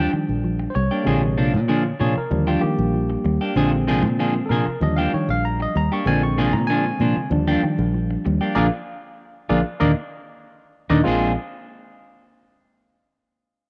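A barky tine electric piano leads this joyful, funky afrobeat excerpt in Bb mixolydian at 96 BPM in a straight 4/4, taking a bright, clean solo from 0.0 to 11.1 seconds while also carrying the accompaniment up front. Beneath it, a fingered electric bass sits forward in the mix with a warm, foam-muted, amped tone, anchoring the low end. Two electric guitars fill out the middle: a dark, mellow one plays fingered arpeggios in the background, while a picked, clean guitar adds stabs closer to the front. The harmony rocks between Ebmaj9 and Bb7 before moving to Eb5 and back to Bb7, with a band accent arriving at 8.6 seconds. The piano and both guitars carry a cassette tape colour, and light reverb gives the whole a homespun, lo-fi feel.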